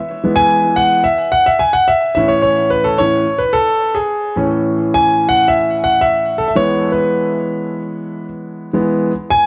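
Warm and uplifting, this brief soul passage in E major at 110 BPM features a clear, intimate grand piano played solo for its full 9.5 seconds, up front with audible action noise and analog delay, moving from E to A and back to E at 6.6 seconds within a moderate club reverb and a dark production tuned to A4 = 442 Hz.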